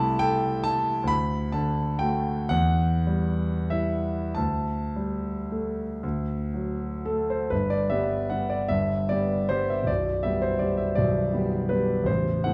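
A dark, reverberant recital-hall sound frames this dreamy, nostalgic romantic nocturne, cut from a longer piece, in which a solo concert grand with deep bass and a natural, up-front presence moves in a rubato 6/8 through drifting harmonies that settle onto a resolved second section at 7.5 seconds.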